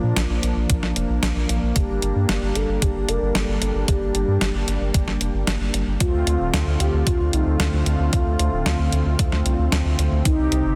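A dense, heavily limited modern mix with a light touch of reverb frames this short, moody synthwave excerpt cut from a longer piece, carrying a cinematic air in a straight 4/4 feel. A brassy, bold analog pad built on detuned sawtooth waves holds sustained chords with a soft attack, filter sweeps, chorus and vibrato, pumping with sidechain beneath a shimmering reverb tail. Above it, an expressive portamento lead sings the melody with a smooth, warbling, vintage tone, its wave-folded sawtooth and sine colour dressed in chorus, delay, vibrato and shimmer reverb. Up front sits a round, deep analog bass with a nasal, triangle-like edge, also pumping with sidechain. A clean 12-bit digital drum machine enters at 0.2 seconds with hi-hat and a fat, tape-tinged sampler snare, and a thumpy electronic kick joins at 0.7 seconds. The harmony moves from Bb to Gm and settles on Dm7 at 6.0 seconds.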